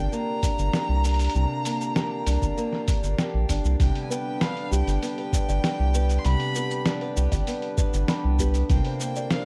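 Wistful and intimate, this short folktronica excerpt at 98 BPM sets a clear, distant violin melody with 12-bit sampler grit and plate reverb over a reedy harmonium, a boxy fingerpicked archtop guitar arpeggiating through delay, a deep, round analog bass up front, a muffled, tape-flavoured lo-fi kit with fat snare, hi-hat and shaker, and a thumpy electronic kick, while a delicate, slightly out-of-tune music box enters at 4.1 seconds with tape echo as the harmony moves from Gm7 to G, all within a dark, lightly reverberant production.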